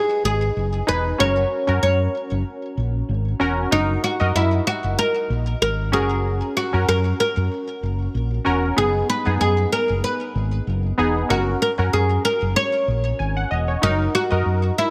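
Glossy and romantic, this 1980s-style pop excerpt moves at 95 BPM in 4/4 with a light 16th-note swing, settled in F# mixolydian as chords circle between F#, G#m and D#m, mostly over an F# bass note. A woody, plectrum-plucked oud with doubled strings carries the melody through a digital delay, while analog keys with a detuned sawtooth tone, filter sweep and chorus supply accompaniment. A round, punchy fingered electric bass sits up front from 0.2 to 14.7 seconds, all within a small room's light reverb.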